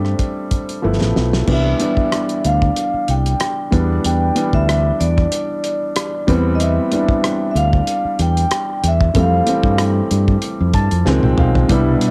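Fingered electric bass sits up front in this short cut from a longer piece of lush 1970s-style soul, its warm, amped tone anchoring a romantic, smooth groove with a gentle swing on the sixteenths. A vibraphone played with medium mallets carries the melody until 9.8 seconds, its dark, ringing metal shimmering with slow motor vibrato, while a grand piano with long sustain supplies the accompaniment and adds a fill toward the close. A cloth-damped drum kit gives a thuddy, fat snare, tight kick, rim clicks, toms and dark cymbals with a rolled-off top, with fills near the start and at the end. The harmony drifts through rich seventh and extended chords, from a rootless Fmaj7 to a closing Dbmaj7, and a silky string machine with phaser and ensemble chorus appears only at 12.0 seconds, very quiet and mellow. The vibraphone, piano and drums carry a cassette tape colour, and the whole sits in a small room with a faint mains hum, like a home recording.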